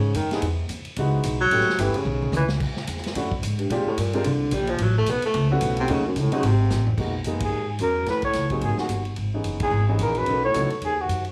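A mellow baritone saxophone takes the solo from the start, its subtone delivery and light vibrato sounding roomy in this late-night, moody slice of small-group swing and bop at a brisk 220 BPM. Beneath it, a woody pizzicato upright bass and a polished, present grand piano carry the harmony through lush extended chords, while a natural-sounding big-band drum kit swings on ride and hi-hat with a punchy kick, medium-tuned snare, crashes, toms and a couple of short fills. At 7.0 seconds the music settles into G# minor, and at 7.4 seconds a clear, vintage-toned flugelhorn enters up front with the melody, singing with vibrato over accented band hits. A moderate large-studio reverb gives the ensemble a sense of space, and the passage is cut from a longer piece.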